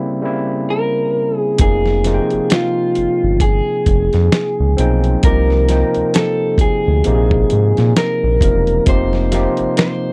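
A dry, close 1970s-style studio sound frames this sultry, smooth excerpt of neo-soul R&B in F minor, moving at a relaxed 66 BPM with a swung sixteenth-note feel. An electric guitar through a small old amp carries the melody in a slightly broken-up, lo-fi tone over a barky, overdriven tine electric piano from the start. At 1.6 seconds a deep, round analog bass and a compressed, sampler-style soul drum kit with a thumpy kick join up front, as the chords move from Fm9 through Cm9 and Bbsus2 to Fsus2.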